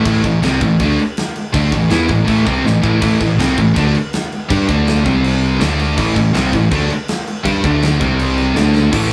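A scooped, high-gain electric guitar sits up front in this relentless, epic heavy metal excerpt, its bright, distorted, picked riff running the full 9.1 seconds in A minor at 162 BPM in a straight 4/4. A second, sludgy electric guitar plays the riff alongside it with a dark, overdriven tone, while a modern picked electric bass adds a growly, punchy, direct sound. The tight metal drum kit enters at 0.1 s with crash cymbal, kick and snare, pairing a medium-tuned snare and a tight kick with gleaming cymbals, an airy, big-room character and a polished finish, and it plays a short fill at 2.7 s. The harmony rests on A minor before moving through D5 and C5 power chords and back again. Moderate studio reverb surrounds a rough rehearsal-room recording, giving the whole cut a raw edge.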